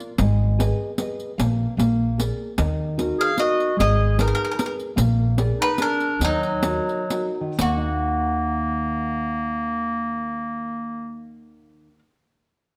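A wistful, passionate Italian folk serenade in triple metre opens at 0.0 seconds with a dark, full-bodied nylon-string guitar, thumb-plucked in a deep classical manner, alongside the bright jingles of a riq played with soft hands and heard close and dry. A woody, growly upright bass joins almost at once, its pizzicato steel strings placed up front beneath minor-key harmony. At 3.2 seconds a bowl-back mandolin takes the melody with picked double strings, while a clear, classical-style clarinet enters alongside it as a second line, its solo voice sounding distant and roomy. The pace slows during the first section before a contrasting passage begins, and the riq drops out at 7.8 seconds. Light reverb and close, detailed microphones keep the ensemble intimate in this excerpt, cut from a longer piece.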